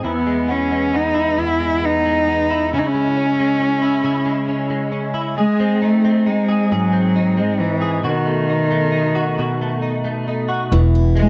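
Aching and dramatic, this short pop ballad section moves slowly in six-eight at 45 beats per minute, passing through E, C#m, G# and B7 before settling back on E. A bowed cello carries the melody from just after the opening moment, up front and warm, its single-player tone focused with a smooth top and gentle vibrato. Beneath it, a clean, direct-recorded electric guitar plays picked, compressed accompaniment from the very start, sitting close in the mix with an ensemble chorus colouring its sound. At 10.7 seconds three more parts arrive together on the return to E: a woody, dark pizzicato upright bass pushed forward, a bright, full-bodied picked steel-string acoustic guitar playing arpeggios, and a shadowy thumb-plucked flamenco guitar adding a second line, its finger squeaks audible. The sound is dry and intimate, like a close 1970s studio recording, with a touch of studio reverb, and the passage is cut from a longer piece.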